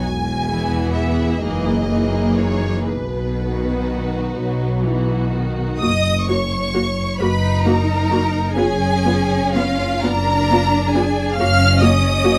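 In a rubato 6/8 lilt, this lyrical, serene slow movement for string orchestra, cut from a longer piece, sets an expressive, soft-attacked violin melody over portamento-tinged cellos and lush, up-front double basses, with a focused, distant second violin line and smooth, even violas joining at 0.5 s and the music turning to a new section at 5.8 s, every part bowed with vibrato and captured dry and close in rich detail.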